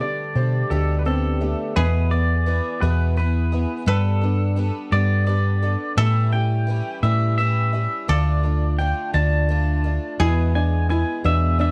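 A stirring, yearning folk excerpt in a slow 6/8 at 57 BPM, where a clean, compressed electric guitar carries the melody through tremolo and slapback echo over a shimmering, octave-doubled twelve-string acoustic, a round, dark hollow-body bass up front, a fingerpicked archtop guitar that drops out at 3.9 seconds, a woody, slightly detuned upright piano playing arpeggios at the start and again from 10.2 seconds, and a dry koto second line entering at 1.8 seconds, all in a close 1970s-style studio sound.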